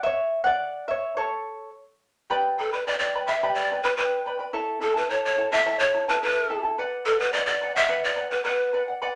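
A straight 2/4 pulse at 107 BPM drives this short Andean folk passage, cut from a longer piece, with a mood that is festive yet tinged with melancholy. A bright, shimmering charango opens alone, fingerpicked on its double strings, some of them octave-doubled, and it carries the accompaniment through the whole clip over chords moving from A to G, back to A, and on to B minor. At 2.6 seconds, large cane pan pipes take the melody, breathy and straight-toned with a crisp, chiffy attack and an unsteady quality, sitting a little louder than the charango. The pipes stop at 8.8 seconds, leaving the charango to finish. Both instruments sit up front in a wet studio reverb with a short decay.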